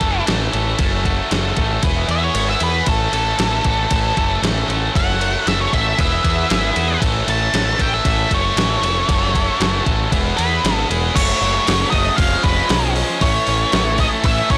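A dark, fuzzed-out lead guitar carries the melody through this carefree, jangly indie rock excerpt, its picked line soloing over the first 11.2 seconds with distortion and a digital delay trailing behind it. Underneath, a bright, double-tracked electric guitar sits up front with an overdriven riff, joined by a growling picked bass whose round tone is also pushed into overdrive. A clean 12-bit drum machine supplies a thumpy kick, medium-tuned snare, hi-hat, ride and crash, sounding sampler-like and re-recorded in a large room, and the kick and snare briefly drop out between 2.4 and 2.9 seconds. The harmony cycles through A, F#m and E before shifting at 11.2 seconds to F#madd9 and C#add9/E#, where a reedy tonewheel organ with key click and slow rotary speaker enters quietly in the background with sustained chords. The whole mix is dry and blown-out, driven hard into overdrive for a loud, saturated sound.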